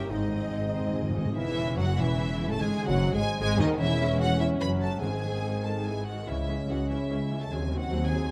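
This dramatic, urgent classical passage, cut from a longer piece, opens at once with a full orchestra in C# minor, moving at 146 BPM in 3/4 with a rubato feel. A rich, focused violin section carries the melody up high with vibrato, while a second violin section sits in the background with soft attacks and expressive portamento. A clear solo clarinet adds a brief second line that stops at 1.1 seconds. Hard-mallet timpani play a crisp, dry fill from 0.1 seconds and return briefly at 5.0 seconds. Beneath them, a lush viola section, a ringing, fingerpicked concert harp playing arpeggios, and mellow French horns holding sustained chords fill out the harmony, all grounded by a dark, woody cello section and a bowed double bass section. The harmony moves between C# minor and G# chords, touching F# minor along the way, and a moderate scoring-stage reverb gives the detailed sound a sense of space.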